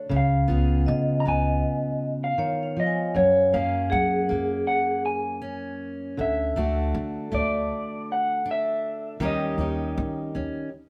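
A fingerpicked steel-string acoustic guitar, full-bodied and up front, opens this heartfelt, nostalgic folk piece alongside a vibraphone played with hard mallets, whose metallic, vintage-sounding arpeggios ring with a fast motor vibrato until 5.1 seconds. A pizzicato upright bass enters almost at once with a woody tone. An electric guitar through a small old amp carries the melody, its picked line slightly broken-up and lo-fi, colored by a harmonic tremolo and sitting above the acoustic guitar's accompaniment. The harmony moves through C#7, F#maj9, Dmaj7 and D#7 in a straight 4/4 feel. The players sound like a band performing live together in one large studio, surrounded by moderate reverb, and the music stops at 10.7 seconds, cut from a longer piece.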